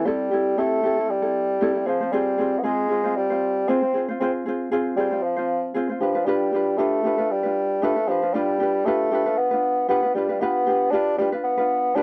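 Easy-going and carefree, this short excerpt of acoustic pop moves at 116 BPM in 4/4, with a gentle swing on the sixteenth notes. A solo bassoon carries the melody in a classical style, its mellow tone touched by light vibrato and a roomy, slightly distant quality while still sitting up front. Alongside it, a thumb-plucked ukulele provides light accompaniment, also up front in the balance. Both parts play together throughout the 12 seconds, moving from C6 to Fm at 1.9 seconds and on to G7 at 6.0 seconds. The sound recalls a dry, close 1970s-style studio recording with only a light reverb.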